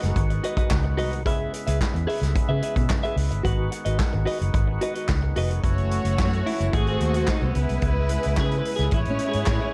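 Disco groove with a glamorous, driving mood, where a round, up-front fingered bass and punchy vintage drums with handclaps, hi-hat and snare carry a bright, twangy clean electric guitar shimmering with harmonic tremolo and a gritty overdriven organ on a slow rotary speaker, until at 5.6 seconds the guitar takes a solo as a lush, bowed dark string section enters, all in a dark, warm small-room production cut from a longer piece.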